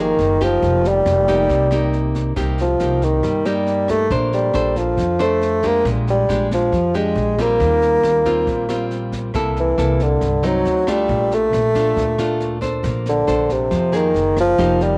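A relaxed, sophisticated bossa nova in Bb major at 138 BPM in a straight 4/4, this excerpt is cut from a longer piece and runs for about 15 seconds. A dark bassoon carries the melody up front, its classical-style solo line sung with vibrato in a low register between C3 and Bb3. Alongside it, an up-front nylon-string guitar provides fingerpicked classical accompaniment, while a woody pizzicato upright bass on steel strings holds the low end. A jazz brush drum kit sits quietly in the background from 0.2 seconds, its smooth brushed snare, rim click and punchy kick softened by a rolled-off top. The harmony drifts through rich colors such as Gbadd9, Cm7, Bbmaj9, Eb69 and D7b9, all placed in a studio space with light reverb.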